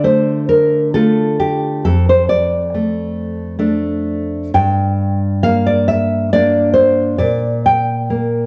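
A solo nylon-string guitar opens on D minor, its full-bodied, thumb-plucked tone sitting up front in a moderate recital-hall reverb. This wistful, melancholic romantic fragment in 3/4 moves with rubato at roughly 60-73 BPM, passing through Dm/F and reaching Gm at 4.5 seconds before settling on Gm/Bb. Finger squeak adds intimacy to the deep classical sound, which spans F2 to G5 in this brief 8.5-second cut from a longer piece.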